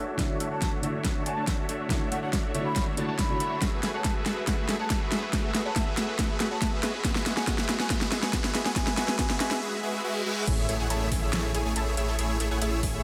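Over a half-time pulse from a punchy electronic kick and an overdriven big-room dance kit with a huge snare and metallic hats, this lush, euphoric future bass build-up sets bright, filter-swept supersaw chords pumping against a dark felt-muted upright piano that stops at 3.6 s, an airy, hollow flute melody in the background, a very quiet wave-folded unison pluck arpeggio and faint risers, reverse cymbal and downlifter, until the drop at 10.5 s brings in a thick, chorused detuned saw bass, all set in a moderate hall reverb.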